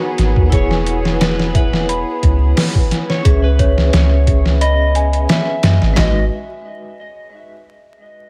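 A cinematic, hypnotic trip hop excerpt in G# minor at 88 BPM with lightly swung sixteenths opens over vinyl crackle with a dark, slightly broken-up electric slide guitar melody, a ringing vibraphone accompaniment carrying tremolo and 12-bit sampler grit, bell-like celesta arpeggios (all three bathed in tape echo) and veiled, muted violins sustaining chords in the background, before a round, tube-saturated 808-style bass and a gritty, pitched-down sampler drum kit of thumpy kick, handclaps, hi-hat, snare and toms arrive up front at 0.2 s, the harmony moving through D#m7, E6 and C#m7 to G#m7 at 6.0 s.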